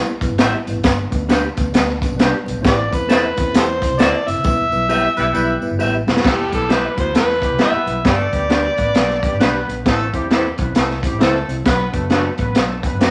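Light reverb and a layer of vinyl crackle give this short cut from a longer uptempo 1960s-style soul piece a vintage sheen, with a swung, driving and passionate feel. Up front, a crunchy breakbeat kit of kick, snare, hi-hat and crash sounds saturated and gritty, with a high-tuned snare, tight kick and rolled-off top. Beneath it, a dark, round, foam-muted fingered bass punches along, and a mellow tine electric piano fills in the harmony cleanly through its built-in speakers. A bright, twangy electric guitar through a small old amp adds slightly broken-up picked stabs, while a jingly tambourine sits in the background through the first section. At 2.7 s an overdriven, amplified harmonica takes the lead in a jazz-style solo full of tongue slaps, scooped notes and vibrato, running to 9.7 s. A clear, roomy horn section enters at 5.2 s with a loose, distant second line, as a drum fill and band accent carry the music into the next section.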